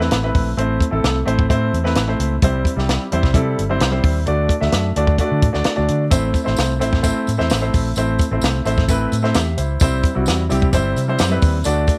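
A driving straight 4/4 at 130 BPM from a compact, dry cocktail drum kit, with a high-tuned snare, tight kick and hi-hat up front, sets this passionate, urgent 1960s-style soul excerpt in A dorian moving through Am, C and D. A concert grand piano, intimate and up front with audible action noise and long sustain, carries the accompaniment over a dark, round, punchy foam-muted electric bass. A jingly tambourine joins in the background at 6.1 seconds, all within a light reverb.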